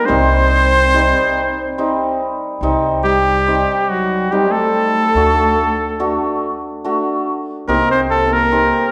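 Klezmer fragment in a bittersweet, soulful mood at 71 BPM in 3/4, set in C dorian sharp4 over Cm, D and back to Cm, where a clear, classical cornet with light vibrato sings the melody up front and takes a solo from 2.6 s, a veiled, bucket-muted trombone carries a dark second line, a shimmering hammered dulcimer rings out the accompaniment, and a woody, thumpy pizzicato upright bass on gut strings anchors the low end, all in a reverberant church or concert hall.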